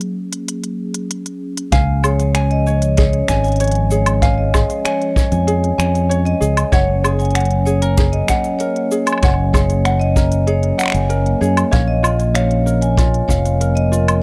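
A straight 4/4 groove of cabasa, finger snaps, crisp hi-hat and woodblock from an organic electronic kit opens this hopeful, playful folktronica piece over a warbling, detuned, lo-fi pad with chorus, before a punchy brushed kick, an up-front fingered electric bass and light fingerpicked ukulele arpeggios with tape echo arrive at 1.7 seconds, joined at 2.0 seconds by a ringing, close-miked vibraphone second line, also touched with tape echo, all within a small room ambience.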